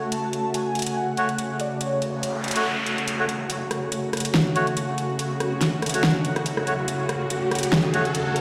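Played through a big sound system in a bare room and bathed in large studio reverb, this brooding, cavernous deep dubstep excerpt opens on a tense, nasal bowed-like drone holding sustained chords up front while a soft, breathy flute-like synth lead with chorus and dub echo sings a brief melody until 2.7 s, an overdriven deep house drum kit with a fat snare, rim click and metallic hats drives the half-time swing, a reedy melodica with low-pass filter and dub echo adds stabs, a noise sweep and riser build tension, and a thick, saturated sub bass slips in barely audible at 3.5 s.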